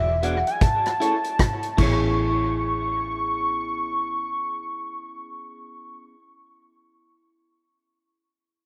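A velvety, detuned synth lead carries the melody up front, its sustained tone softened by chorus, vibrato and tape echo, in this romantic, sweet lovers rock reggae excerpt with a gentle swung feel over an E9 to Amaj7 change. A round, foam-muted fingered bass sits up front beneath it, while a slightly broken-up electric guitar through a small old amp adds lo-fi picked stabs with tape echo, and a glassy, bell-like FM electric piano with chorus and tremolo stays in the background. A dark-cymballed vintage kit with punchy kick, hi-hat, rim click and crash plays only until 2.0 seconds, all in a rough home demo mix with light small-room reverb.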